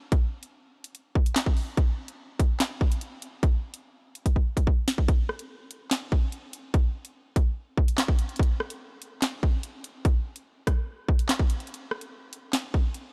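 Dark and ominous, this short hip hop cut from a longer piece rides a half-time 4/4 feel carried entirely by an electronic drill drum kit, with a hard-clipped kick, sharp snare, bright hats, rim clicks and handclaps sitting up front from 0.1 seconds. A drum fill at 4.3 seconds leads into the second section at 5.1 seconds, and a brief break arrives at 11.7 seconds before the kit plays on to 13.0 seconds. The dry, dark production keeps the beat close and warm.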